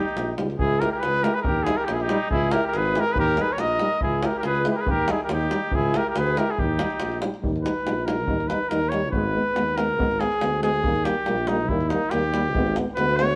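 A clear flugelhorn leads up front in this bittersweet, virtuosic Balkan brass band excerpt, swinging in 2/4 at 140 BPM in Eb phrygian dominant, with a softly attacked trumpet adding a second line with light vibrato until 7.2 s, then the flugelhorn takes a solo from 7.4 s as the harmony shifts between Eb and Abm. Beneath it, a vintage-toned euphonium and a smooth, mellow trombone sit in the background as accompaniment, a distant, roomy tuba carries the bass with a gentle vibrato, and a deep, compressed, saturated davul drives the percussion. The band plays live together in a stone room whose wet reverb lingers around the whole ensemble.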